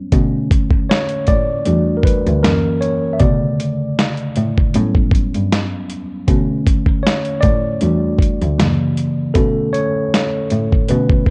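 A mellow tine electric piano leads this melancholic, reflective lo-fi hip hop excerpt, playing solo from the opening moment with a worn, slightly out-of-tune tone and a cassette tape character that sits up front. Underneath, a dark cello carries the bass line, one player bowing with vibrato for a woody, close sound. A dusty, sampler-style drum kit of hi-hat, kick and snare enters at 0.1 seconds, compressed and overdriven, with a thumpy kick and a medium-tuned snare. The groove moves at 78 BPM in 4/4 with a light 16th-note swing, cycling through B minor changes such as Bm7, Em11, F#7 and A13. Light reverb and a cassette tape finish give the whole recording a reflective, lived-in feel.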